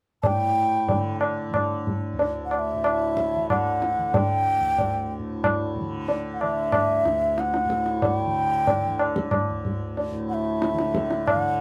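Set in a steady 3/4 at 92 BPM with a straight feel, this short Hindustani classical passage in D major, tuned slightly flat to A4 = 437 Hz, carries a radiant, meditative mood and is cut from a longer piece. The bamboo bansuri leads from 0.2 seconds, sitting up front with an airy, mellow tone, expressive vibrato and tongued phrasing within a narrow span from E5 to A5. Beneath it, the tanpura sustains a softly plucked drone between D2 and D3, its buzzing, shimmering strings kept lower in the balance. The high-tuned tabla also sits forward, ringing with a vintage, band-limited character that gives the percussion an aged colour. Close, detailed microphones and little reverb keep the sound intimate and dry throughout the single section, which runs to 11.6 seconds.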